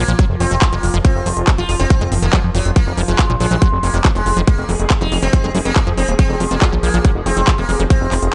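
Psychedelic trance with an alien, intense mood, moving in a straight four-beat pulse over a single F5 chord throughout this short cut from a longer piece. A crisp, tape-tinged dance kit of handclaps and hi-hat enters in a small room ambience, and a punchy electronic kick lands up front just after it, from 0.2 seconds. A fat, detuned analog bass of sawtooth and square waves holds the low end with a moving notch, while a squelchy, resonant acid bass riff with chorus and dub echo bubbles in the background through filter sweeps. Over them, a buzzing, plectrum-plucked sitar carries the melody, its sympathetic strings shimmering through phaser and dub echo. A swarming, warbling drone of granular, evolving sustained chords hovers behind everything else in its own reverb, and the sitar, drone and acid bass all breathe with sidechain pumping in a dry, close mix that's rolled off at the very top.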